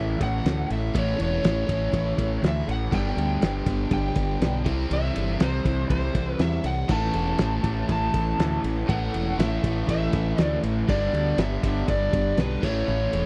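A dry, close, 1970s-style studio sound frames this sunny, driving classic rock excerpt in A mixolydian at 121 BPM, moving through A, G and C6 chords in a straight 4/4. A dark, overdriven slide guitar carries the melody through a tape echo, while a cranked stack guitar and a phased, overdriven semi-hollow guitar play riffs over a growling fingered electric bass that sits up front. In the background are a full-bodied jumbo acoustic guitar with audible finger squeak, a cloth-damped, muffled drum kit with a fat snare, tight kick and dark cymbals, and, from 6.9 seconds, a raw, double-tracked garage guitar riff.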